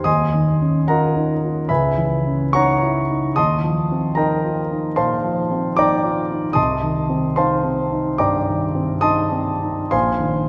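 A concert grand piano sits up front, intimate and smooth, with a vintage character, a deep bass register and the soft noise of its action clearly audible. This is impressionist solo piano in the classical tradition, with a nocturnal, mysterious mood and a freely breathing rubato feel in 4/4. Over about 10.5 seconds the harmony drifts through lush extended chords: Ebm9, then Dbm9, then Eb69 at 3.4 seconds, followed by Cm6 and a suspended Bb9sus4 at 9.9 seconds. The piano spans a broad range, from the low Bb1 up to Eb6. A long, wet church reverb surrounds the instrument, giving the sense of a large hall, and the recording carries lossy compression artefacts. The passage is cut from a longer piece.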